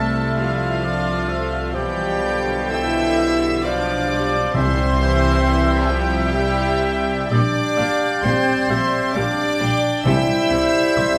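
Classical orchestral music in a slow, rubato 3/4 at 66 BPM in C major, tender and warm, where a rich violin section carries the floating sul tasto melody while a second violin section, flute, clarinet and cor anglais weave second lines, the airy silver flute shimmering with vibrato in the background. A mellow bassoon and close viola section accompany, a distant French horn section holds sustained chords, and a dark double bass section with cellos anchors the bass, while timpani with soft mallets enter at 4.5 s with a round tone. The whole ensemble sits in a wet scoring-stage reverb, and the passage is cut from a longer piece.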